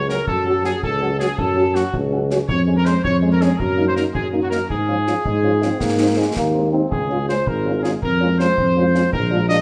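A bright, up-front trumpet section carries the melody in this spirited, festive military-style march for wind band, a short cut from a longer piece in Db major, moving at 108 beats per minute in a straight 6/8. Beneath it, a tuba with light vibrato anchors the bass, sounding at once roomy and forward, while a close-miked French horn section fills in the accompaniment with a gentle vibrato and a blended, ensemble tone. Concert snare and bass drum keep the march going from the start, close and dry, with dark cymbals. Around 5.3 s a clear euphonium slips in with a brief second line until 6.9 s. The harmony moves through Db, Eb minor and Ab chords, and a moderate recital hall reverb gives the band a natural sense of space.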